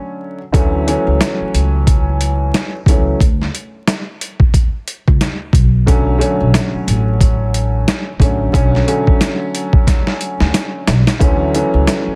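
Reflective and gritty, this boom-bap hip-hop excerpt moves at 90 BPM in 4/4 with a swung sixteenth-note feel. A dark upright piano opens alone on a rootless Bm7, its mellow, intimate tone carrying audible action noise and long sustain, filtered and colored by cassette tape. At 0.5 seconds an acoustic upright bass joins with woody pizzicato on steel strings, alongside a sampler-style drum kit that sounds pitched down and compressed, with a thumpy kick, a medium-tuned snare, hi-hat and a tape-warm edge sitting up front. The harmony rests on Dmaj7 and Bm7, and a drum fill from 9.9 to 11.2 seconds leads back to Dmaj7. Small room ambience, vinyl crackle and a dense, heavily limited modern master give the whole a gritty, lived-in feel.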